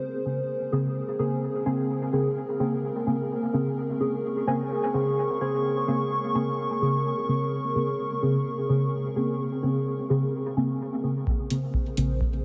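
A straight 4/4 pulse at 128 BPM underpins this deep, hazy dub techno excerpt in Bb minor, cut from a longer piece and resting on a single Bbm9 chord. For most of its length a moody, detuned analog pad holds sustained chords with a slow attack and long release, while a soft, warbling chord stab sits up front, its vintage cassette-tape color, chorus, phaser and dub echo shifting under a filter sweep. Both pad and stab breathe with sidechain pumping. At 11.3 seconds the groove arrives: an up-front, tape-warm deep kick and a round analog bass on a low Bb, joined at 11.5 seconds by metallic hi-hats dulled with a low-pass filter. The whole mix is dreamy and soaked in a huge ambient reverb with a 3.8-second tail.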